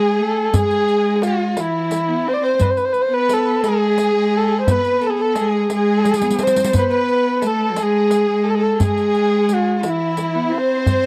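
A dark, woody kamancheh opens this Persian modal ensemble piece, bowed up front with vibrato and gliding portamento, its melody carried in a tape echo and moving between E4 and D5, while a rich, smooth cello and a lush studio violin section play a second line beneath it from the very start. The mood is warm and passionate, unfolding at a slow 58 BPM in a straight 6/8, with the strings tuned to A4 = 441 Hz. At 0.5 s the percussion joins: a deep tombak played with soft hands and a riq whose bright jingles sit lower in the balance. The cello holds an even, vibrato-rich tone near the front, and the violin section adds soft-attack, expressive bowing further back. A drum fill between 6.0 and 6.7 s briefly draws attention to the percussion before the ensemble carries on. The sound is dry and close, with a 1970s studio character and a small room adding moderate reverb, and the passage is cut from a longer piece.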